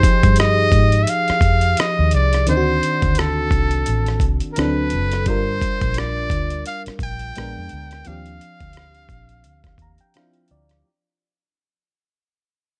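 A muted trumpet with a buzzy, breathy edge carries the melody up front in this soulful, smooth neo-soul R&B cut, its scooped notes and light vibrato touched by slapback echo over a light 86 BPM sixteenth-note swing. A glassy, bell-like FM electric piano with chorus and phaser supplies the chords, moving from Fm9 through D7b9 and Gm7 to a closing Ebmaj13, and adds a fill at 9.4 seconds. Underneath, a gritty, compressed sampler-style drum kit with a thumpy kick and rim clicks pairs with a round, punchy foam-muted electric bass, all in a dry room as the whole passage fades out.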